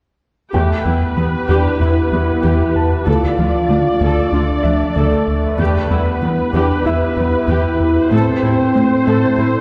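Cinematic music at 95 BPM in 4/4 with a straight feel, this roughly ten-second cut from a longer piece sits in E phrygian and carries a futuristic, relentless mood, moving through Em, Dm, Em and Am. From 0.5 seconds a round, deep analog bass drives a riff alongside a very quiet, smooth cello section holding the low end, while a French horn section sustains chords with light vibrato and a smooth top. A viola section adds expressive, lush accompaniment with vibrato and portamento, and a juicy, squelchy blip pluck runs arpeggios in the background through phaser and tape echo. At 1.1 seconds a warbly, lo-fi pad joins with detuned, ring-modulated sustained chords, soaked in chorus and its own reverb. A bright, worn baby grand piano with audible action noise supplies background texture through tape echo, and the whole mix is heard from further back in a reverberant concert hall with some lossy compression artefacts.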